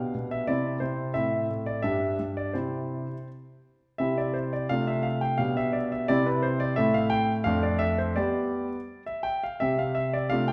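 A playful, elegant classical-period piano sonatina in C major at 85 BPM in 2/4 with a flexible rubato feel, this short excerpt from a longer piece features a warm, polished solo concert grand heard up front with intimate presence, deep bass, long sustain and audible action noise, playing from 0.0 to 10.5 seconds through an opening passage and a second passage from 4.0 seconds, set in a recital hall acoustic with a lingering reverb tail, tuned slightly below standard pitch.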